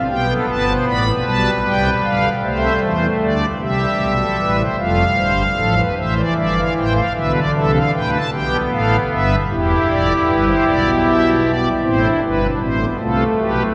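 A long cathedral reverb, lingering around 7.7 seconds, fills a church or concert hall, while the organ itself sits up front. This is a short cut from a baroque-style four-part fugue for solo pipe organ in F major, moving at 51 BPM in 12/8 with a straight feel and tuned to A4 = 438 Hz. The organ speaks through its strings celeste stops, giving a soft, shimmering tone with a romantic voicing that reaches from deep E1 notes up to B5. The mood is elegant and joyful, with an opening phrase giving way to a second passage at 4.8 seconds. The harmony moves from G and C through Fmaj7, Bdim and Em7 before settling on Am as the organ plays on to 13.7 seconds.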